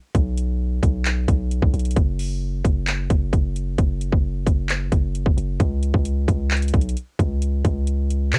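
This dry home cassette recording has little reverb and an eerie, dark mood, cut from a longer trap and hip hop piece. The tempo sits at 132 BPM in 4/4 with a half-time feel, so the groove moves at half the pulse. An electronic, produced trap kit of handclaps, hi-hat and kick drum runs from 0.1 to 8.4 seconds, its hard-clipped kick and metallic hats given a tape-warm cassette colour and placed up front. Beneath it, a long sustained 808-style bass with a deep sine tone and fast attack decays across its notes, spanning F#1 to C#3 and sitting up front as well. Around 5.6 seconds the music moves into a new section, carrying the same spare pairing of bass and drums through to the end of the clip.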